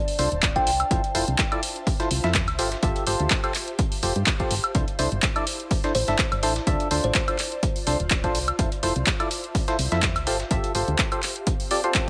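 Uplifting and feel-good, this piano house excerpt moves at 125 BPM with a light 16th-note swing, cycling through Dm7, Fmaj7, G9sus4 and C69 as a hollow, percussive organ stab carries the riff through analog chorus, cassette tape colour and sidechain pumping over a round, dark FM bass that pumps along with it. A punchy, tape-kissed electronic kick and an analog drum machine of handclaps, hi-hat and woodblock sit up front, while a gritty, dusty sampler-style kit adds faint hi-hat and snare beneath an ethereal, detuned pad. A woody, thumbnail-plucked kalimba rings out through digital delay at the start and again from 5.9 to 7.4 seconds, and a quiet downlifter opens the passage before a soft swell closes it at 11.6 seconds, all in a light reverb.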